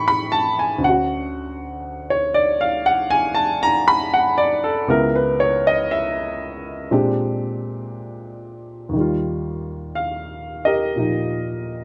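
Playful and swinging, this solo jazz fragment at 59 BPM in 4/4 features a dark, mellow baby grand piano placed up front and recorded close and dry in natural, detailed sound, spanning C#2 to C#6 as it moves from A7 through Dmaj7, C#m7 and A#13 before shifting to a new section on Ebadd9 at 8.9 seconds.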